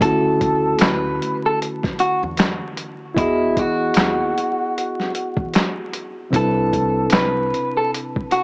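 Lo-fi hip hop at 76 BPM in 4/4, with a 62% swing on the sixteenths, this short excerpt from a longer piece sits in D major and feels nostalgic and dreamy. An up-front electric guitar through a small old amp carries the melody in a slightly broken-up, picked, compressed tone, softened by a low-pass filter. Beneath it, a reedy, barky electric piano heard through its built-in speakers plays the accompaniment, its clean brightness dulled by cassette tape and filtering. A woody, growly pizzicato upright bass with steel strings holds the low end until it drops out at 7.5 s. The sampler-style kit of thumpy kick, medium-tuned snare, hi-hat and handclaps sits up front, muffled and gritty like a vintage 12-bit sampler, with the feel of being re-recorded in a small room. The harmony moves from Dmaj9 to Emaj9 at 3.2 s and to Cmaj9 at 6.3 s, inside a moderate spring reverb with vinyl crackle and a small-speaker sound.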